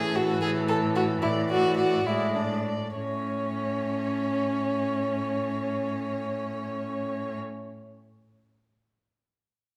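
Lively and spirited, this brief passage from a quick classical-period movement for string quartet moves in 6/8 at 64-77 BPM in A major and eases its pace through the first 3.0 s: a clear, focused first violin carries the melody from a distance, a smooth, even second violin sits close and up front with its inner line, and a rich viola and cello supply accompaniment and a bass A2, all four bowed with vibrato as the harmony passes from A5 through Dadd9/A to A, wrapped in the 1.5 s reverb of a recital hall.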